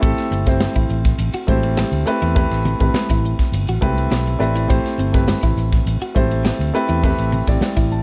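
Funky and driving, this electric jazz fusion excerpt moves at 103 BPM in a straight 4/4, sitting on a single Am11 chord in A dorian. A warm grand piano sits up front with an intimate, natural tone, its short sustain and audible action noise giving the comping a close feel, and it breaks into fills at 3.5 and again at 7.6 seconds. Beneath it, a fingered electric bass lays down a round, punchy, amped line, while a crisp fusion drum kit with a punchy kick, high-tuned snare, hi-hat and ride cymbal sounds airy and polished. Congas with a thick, damped skin and soft hands sit close and dry in the background. From 0.3 seconds a clean, picked electric guitar adds dark, compressed stabs treated with analog chorus, tucked low behind the band. A small room ambience and a dark production tie the sound together.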